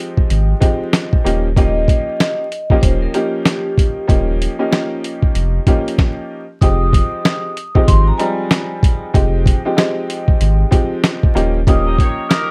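Dry, with a bed of vinyl crackle, this tough, dark boom-bap hip-hop excerpt in F minor rolls at 95 BPM with a swung 16th feel. It is built on gritty, pitched-down sampler drums with a thumpy kick and a clear, woody, slightly detuned upright piano moving between Fm7 and Eb7. A deep, thick, saturated sub bass sits up front, while a bright, ringing vibraphone with tape echo carries the melody from 1.6 seconds. The groove drops out for a brief stop at 6.0 seconds, and a tight, vintage horn section adds jazz-style stabs at 11.9 seconds.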